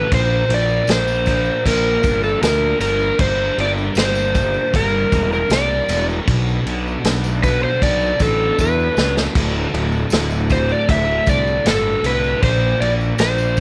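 A light reverb and small-room ambience give this short cut from a longer psychedelic rock piece a trippy, kaleidoscopic feel, moving at 78 BPM in a straight 4/4. Up front, an overdriven slide guitar carries the melody with a slapback echo, while a fuzz fingered bass sits close by with a round, punchy tone. Behind them, a thick, double-tracked fuzz guitar plays a picked riff through distortion and phaser, and a very quiet, mellow combo organ holds clean sustained chords with light vibrato. A vintage acoustic drum kit with a punchy kick, medium-tuned snare and rolled-off top comes in at 0.1 seconds, joined by a jingly, bright tambourine at 0.7 seconds. The chords move from Bb through Gm, Bm7 and D before returning to Bb, and a drum fill at 8.6 seconds leads into the D chord.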